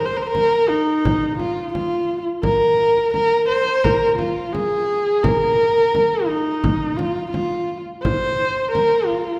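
A husky, focused horsehead fiddle opens this brief excerpt of Mongolian folk music. Played up front by a single bowed player, it carries the melody between Eb4 and C5 in F yu mode, with rich vibrato and portamento. A deep, close and dry frame drum played with soft hands enters at 0.2 seconds and sits low in the mix at 86 BPM in straight 4/4, while a wet scoring-stage reverb heard from further back in the room lends the whole a vast, windswept mood.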